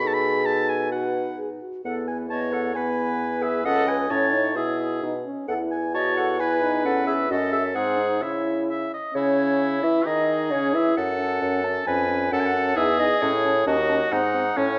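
A quick, spirited classical-period movement for wind quintet, cheerful in mood, moving at 132 BPM in a straight 2/4 and cut from a longer piece. It sits in E major before turning toward C# minor at 7.3 s, with passing dominant-seventh colours such as G#7 pulling the harmony along. The silver concert flute carries the melody with an airy, vibrato-touched, soft-attacked tone, yet it sits in the background, while the clear oboe with its smooth top plays the second line up front. Beneath them the mellow clarinet and the French horn supply accompaniment from a distant, roomy position, and the bassoon, with light vibrato and a vintage character, holds the bass up front from C#2 to E3. All five play from the opening until about 14.8 s, set in a moderate recital hall reverb with a dark production that keeps the top end subdued.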